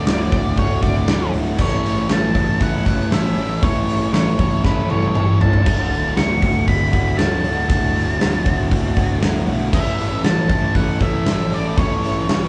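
Three electric guitars open this restless, anthemic excerpt of quiet-loud alternative rock: a dark, fuzzed octave lead carries the melody high above, while a bright, picked fuzz guitar and a sludgy, overdriven guitar churn out the riff in the background. A fraction of a second later, an overdriven, fuzz-toned picked bass settles into its low register behind them. The huge arena drum kit sits up front with a fat snare, punchy kick, crash, hi-hat and toms, all roughened by a vintage 12-bit sampler grit. The drums break into a fill from 4.6 to 5.7 seconds before the harmony returns to D. At 118 BPM in a straight 4/4, the piece moves between D and A in D major, and the whole band sounds like it is playing live in one room, bathed in a moderate large studio reverb.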